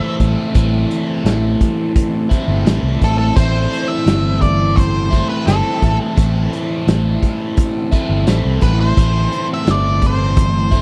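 Psychedelic rock with a dark, hypnotic pull, cut from a longer piece that holds one chord throughout. Up front, a biting, double-tracked guitar plays a picked riff through phaser, while an octave-fuzz lead guitar picks a distorted melody with tape echo and a reedy, vintage overdriven combo organ sustains chords with light vibrato in the background. At 0.2 s a round, amped fingered bass and a saturated, gritty garage drum kit with a punchy kick and medium-tuned snare join, set in a dry, close 1970s-style small-room sound.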